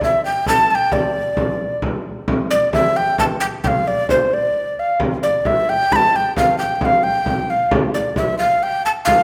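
Driving and ancient in mood, this brief fragment of a medieval dance moves in 6/8 at 88 BPM, counted in dotted quarters with a straight feel, in D minor. A tenor recorder carries the melody from start to finish, its breathy, mellow wooden tone marked by a crisp, chiffy attack and an unsteady vibrato, sitting close-miked and up front between C5 and B5. Beneath it, a frame drum keeps the percussion going throughout, sounding deep and large with hard-handed strokes, though its sound is more distant and quieter than the recorder. The opening phrase repeats at 2.3 seconds, returning to the same material through to 9.2 seconds. A wet recital-hall reverb with a 1.5-second decay wraps the performance in a resonant, spacious acoustic.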